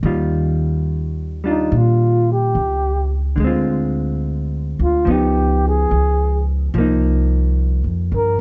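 Romantic and intimate, this short fragment of a swung jazz ballad in Eb major at 72 BPM opens with a dark, clean hollow-body electric guitar voicing chords from Ebmaj9 through Cm7 over a woody, thumpy pizzicato upright bass, before a breathy, whispered flugelhorn with a soft attack, vibrato and plate reverb enters at 1.5 seconds to carry the melody up front in a dusky, close-sounding mix.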